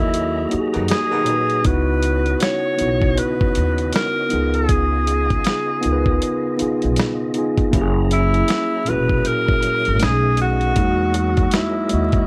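A breathy, whispered tenor saxophone carries the melody up front with subtone, vibrato and scooped notes in this smooth, late-night R&B and neo-soul excerpt, set over mellow tine electric piano accompaniment and a woody, growly pizzicato upright bass in a swung sixteenth-note feel. A gritty, compressed sampler-style drum kit with a thumpy kick sits forward from 0.1 s, while a fat, lightly overdriven tonewheel organ with key click, chorus vibrato and a slow rotary speaker holds sustained chords in the background. A loose jazz-style horn section adds octave-doubled stabs from 0.7 to 1.4 s within an opening band accent, all framed by light reverb and vinyl crackle.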